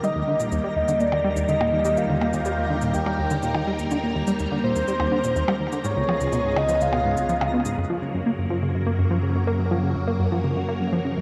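A soft, octave-layered synth lead with a round, mellow tone and gentle vibrato carries the melody through the first 7.5 seconds of this excerpt of expansive, luminous ambient space music at 124 BPM, trailed by chorus, shimmer reverb and delay. Beneath it, a punchy, funky analog bass plays a riff, a swirling, vintage string machine holds phased chords, and an evolving, nasal analog drone joins at 0.7 seconds. Electronic shaker and percussion blips tick until 7.8 seconds while a twinkling granular texture sparkles in the background, and the chords move from Eb to Db7 before settling on Gb, the whole mix bathed in wet spring reverb and cassette-tape echo.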